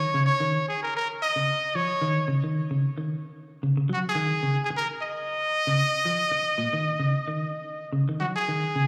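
Defiant and intense, this afrobeat fragment at 112 BPM in Eb minor, cut from a longer piece, sets a punchy, vibrato-laden trumpet melody with slapback echo up front over clean, picked electric guitar arpeggios dressed in spring reverb and slapback, both playing throughout its 8.9 seconds on an Eb7 chord with its third omitted in a lush hall, heard live through a club PA.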